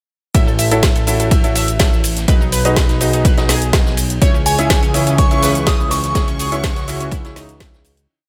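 A punchy, up-front electronic kick anchors this emotional, dreamy progressive house piece at 124 BPM in C# minor, entering at 0.3 s together with a fat, saturated analog bass, a deep house kit with woody snare and dark hats, a looped breakbeat from a rolled-off vintage kit in the background, round, detuned analog pluck arpeggios in sixteenths over a pedal note, and worn, sampler-gritty baby grand piano stabs in dotted rhythm. A smooth analog pad arrives at 4.2 s, and at 4.5 s a crystalline FM bell melody enters, doubled in unison by a very quiet bowed violin section, before the fade-out that begins at 5.5 s.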